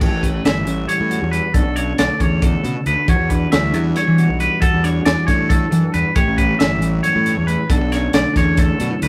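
Math rock and Midwest emo in a playful, wistful mood, this brief excerpt moves at 273 BPM in 7/8 over A7, Bm9 and Em9 chords. A dark, clean, fingered electric guitar carries the accompaniment while a bright, twangy, picked electric guitar spins arpeggios up front, and a growly overdriven fuzz bass sits forward beneath them. A crisp fusion drum kit with a punchy kick, high-tuned snare, hi-hat and crash fills a small pumping room, all captured as a rough rehearsal-room recording with light reverb.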